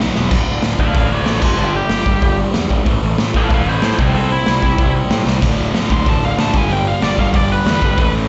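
Heard through a club PA with its top end shaved off, this energetic, rebellious punk rock excerpt drives on up-front, gritty garage drums with a punchy kick, a growly fuzz bass and a background riff from a bright distorted guitar with slapback echo, while a dark, nasal lead guitar with a parked wah and delay takes a solo from 0.8 seconds, and after a drum fill at 5.3 seconds a sludgy overdriven second guitar, heard only briefly at the very start, rejoins the riff at 5.4 seconds.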